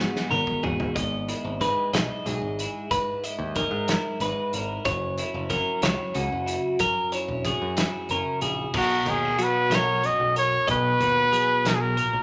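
Bright and playful, this short passage cut from a longer math rock and midwest emo piece moves at 62 BPM in a straight 6/8, set in B major and tuned slightly below standard pitch. Two clean, twangy twelve-string electric guitars run throughout, one holding the accompaniment across a broad low-to-mid span while the other spins arpeggios higher up, both compressed and picked. A punchy, picked electric bass anchors the low end, and a loose acoustic drum kit opens with a fill in the first second before settling in with dark cymbals, a punchy kick and a gritty, saturated sound with a rolled-off top and a pumping room. The chords move from G#m9 through Emaj7/G# to F#9, then land on Bmaj9 as the passage shifts into a new section at 8.7 seconds. At 8.8 seconds a clear, close-miked trumpet enters up front with a light vibrato, carrying a pop-style solo melody to the end, all set in a moderate large studio reverb.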